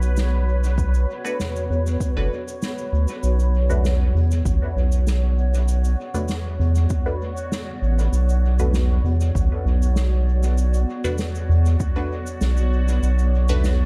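A round, dark analog bass sits up front in this deep, spacious ambient dub excerpt at 98 BPM in B minor, beneath a blurred granular cloud pad, a bubbling, resonant stepped-filter texture with chorus, a soft-mallet kit of cabasa, fat snare and toms with dub echo, an overdriven electronic kick entering at 0.8 s, and muted, detuned sawtooth chord stabs with phaser, lush chorus and dub echo from 1.2 s, set in an echo-heavy small-room mix as the harmony moves from Bm to Bm7 at 3.2 s.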